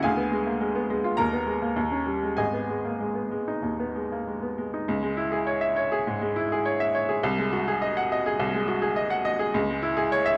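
Rubato 4/4 at 94-107 BPM drives this stormy, passionate classical virtuoso piano study, cut from a longer piece, where a solo baby grand, brilliant and up front with short sustain, ranges from G#1 to A#5 in G# minor before turning to C# minor at 4.9 s, all set in a moderate recital hall reverb within a dark production.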